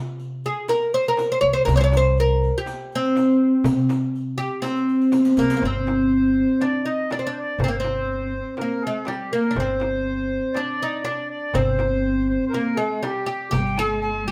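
A straight 4/4 pulse drives this melancholic, longing Arabic maqam ensemble excerpt, where a bright, woody fretless oud carries the melody up front over thumpy pizzicato upright bass, a crisp metal-shell darbuka, a small soft-handed frame drum and a distant riq with dark jingles that drops away after a drum fill ending at 5.6 s. Just before that, at 5.4 s, a reedy, vintage accordion takes up a second line, joined at 13.5 s by a smooth, bowed cello section, with the band playing live together in one room under a wet studio reverb.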